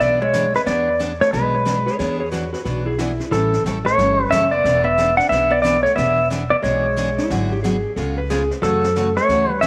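Down-home and swinging, this short western swing excerpt moves at a brisk, loping pace over a lightly swung country feel. A twangy pedal steel guitar carries the melody up front, played with fingerpicks and slide, its tone touched by tape echo and volume swells. Beneath it, a dark hollow-body jazz guitar picks a second line while a bright, full-bodied dreadnought acoustic guitar picks out the accompaniment. A woody upright bass thumps along on gut strings, and a brushed drum kit with a high-tuned snare and hi-hat sits softly in the back. A clean lap steel guitar slips in briefly at 1.9 seconds and again at 7.2 seconds with its own tape echo, and the harmony travels from E7 through A7 before turning toward F#m7 at the close, all set in a moderate echo chamber with a small room ambience.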